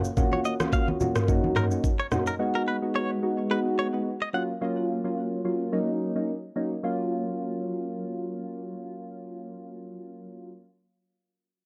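Sunny and joyful, this short afrobeats excerpt in F# major moves at 108 BPM with a gentle sixteenth-note swing, its soft, round electric-piano-like synth keys carrying lush major-seventh and minor-seventh chords through chorus and phaser for the full 10.5 seconds. An electronic afro-pop kit with a knocking kick, rim click, shaker and toms is joined by ringing, low-tuned congas for only the opening couple of seconds, while a bright, twangy clean electric guitar picks a riff through tremolo and analog delay until 4.4 s. The sound is dry and gritty, with a cassette-tape character and the keys, drums and guitar all placed up front.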